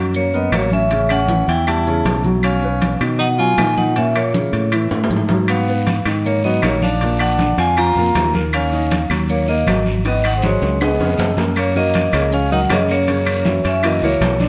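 A bright, growly fingered electric bass sits up front in this sultry, sophisticated stretch of Afro-Cuban jazz, cut from a longer piece and moving at 158 BPM in a straight 4/4 around Eb minor. Above it, a vibraphone struck with medium hard mallets and its motor off carries the melody with a metallic ring, while a breathy, whispered tenor saxophone with vibrato and a soft attack adds an intimate second line from close range. A natural-sounding baby grand piano comps through rich harmony that shifts from a rootless Ebm7 through chords like Bmaj9#11 and Abm9 before settling on F#6 and F#7 near the close. The percussion bed is layered: ringing metal-shell timbales with a vintage, band-limited tone join thick-skinned, damped congas played with soft hands, woody claves, grainy maracas, and a raspy guiro that enters at 5.5 seconds, these last four sitting in the background. Drum fills mark the turns at 4.9 and 10.6 seconds, and a moderate recital hall reverb gives the ensemble a polished sense of space.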